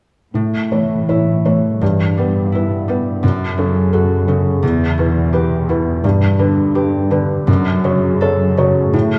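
Moving and sorrowful, this short excerpt of a cinematic, emotional film score for orchestra unfolds at 84 BPM in 4/4 with a rubato feel. A felt-muted upright piano carries the accompaniment up front, its tone soft, mellow and intimate, while a concert harp plays fingerpicked arpeggios that ring out close beside it. Beneath them, a muted symphonic cello section holds the bass con sordino in the background, veiled and dark with light vibrato, soft bowed attacks and a smooth top. The harmony moves from A through Em/G, F#m, Em and G before settling back on F#m around 7.5 seconds. All three parts enter within the first half second and continue together to 9.2 seconds. A moderate scoring stage reverb and a dark, warm production give the passage its sense of space.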